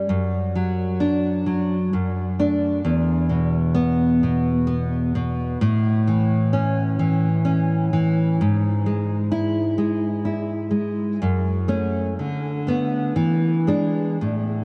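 Tender and warm, this romantic piece for solo classical guitar drifts in rubato 3/4 at around 56-66 BPM, tuned to A4 = 437 Hz. The fingerpicked nylon-string guitar sits up front across E2 to E4, with finger squeak audible, a subtle chorus and analog delay, moving from D/F# through F#m, A and E/G# before closing on Bm7/D at 12.2 seconds and E7 at 13.2 seconds. A huge ambient reverb with a 4.2-second tail and a cassette-tape character give this 14.6-second fragment of a longer piece a dreamy, soaked haze.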